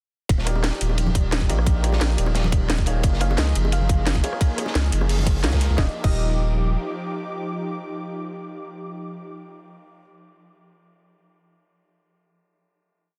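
A detuned sawtooth pad, a deep saturated sine sub bass with long gliding notes, and a tight electronic kick open this dreamy liquid drum and bass piece together at 0.3 seconds, moving at 175 BPM in a straight 4/4 in Eb major. Around the up-front kick, a layered drum and bass kit rolls in a two-step pattern with a cracking snare, metallic hats, rim clicks and crashes, while a gritty looped breakbeat with edits sits under it, its dark cymbals and medium-tuned snare high-pass filtered. Light bongos and congas played with soft hands tap in the background, and a grand piano adds syncopated, rootless chord stabs through 12-bit sampler grit and delay. The harmony moves from Ebmaj9 to Gbmaj13 at 3.0 seconds, and a soft, round pluck enters at 3.2 seconds with a short motif between Eb5 and F5, colored by chorus and tape echo. The drums drop away by about 6.1 seconds and the bass by 6.8 seconds, leaving the mellow, pumping, chorused pad, the piano and the pluck to ring out on a final Ebmaj9 in a small room, within a dense, heavily limited master.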